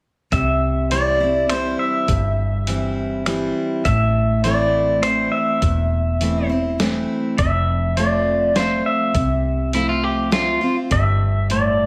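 Sunny and heartfelt, this short passage cut from a longer honky-tonk and classic country piece sways along in a straight three-beat waltz metre. A clean, up-front pedal steel guitar carries the melody, its fingerpicked slide lines compressed and shaped by volume swells. Beneath it, a bright, full-bodied dreadnought acoustic guitar is picked as accompaniment, while a dark, round, foam-muted electric bass sits low and amped. The drums come from a gritty, pitched-down, sampler-style boom bap kit with a thumpy kick, a medium-tuned snare, hi-hat and finger snaps, all with a tape-warm tint. Between 9.7 and 10.8 seconds, a twangy, slightly broken-up electric guitar adds a brief picked second line treated with tape echo. Across the passage the harmony moves from C through Am and F to a closing G5. A moderate recital-hall reverb gives the whole band a natural sense of space.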